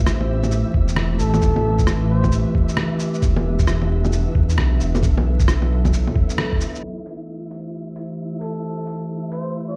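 A warbling, nostalgic pad, a dark, rumbling detuned saw bass held up front with sidechain pumping, and a flickering granular texture open this ghostly, melancholic future garage excerpt, while a muffled, pitched-down sampler kit of bongos, hi-hat, rim click and shaker swings beneath a thumpy, tape-warm kick. A veiled, bucket-muted trumpet with light vibrato and 12-bit grit drifts in at 1.2 seconds for a brief jazz-style phrase through tape echo, and returns near the close after the bass drops away at 6.1 seconds. Vinyl crackle, a faint mains hum, a low-pass haze and a large reverb, as if played through a big sound system in a bare room, frame the whole, with a filter sweep running from 6.8 seconds to the end.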